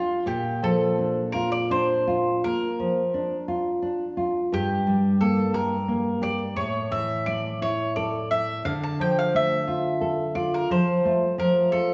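A wet recital-hall reverb with a 1.6-second decay surrounds this short cut from a longer piece, giving it the air of a church or concert hall with some small-room ambience. It is a melancholic, solemn romantic duo in D minor, moving in a rubato 12/8 at roughly 52-60 BPM counted in dotted quarters, with tuning set to A4 = 442 Hz. The mandolin carries the melody from F4 up to A5, its picked double strings sounding round and up front. The nylon-string guitar, fingerpicked and full-bodied with a deep classical tone, supplies the accompaniment from G2 to A4 and sits slightly louder than the mandolin. Both instruments play throughout the 11.9 seconds over a progression of Bb, Gm, A5 and Dm, the last arriving at 8.7 s.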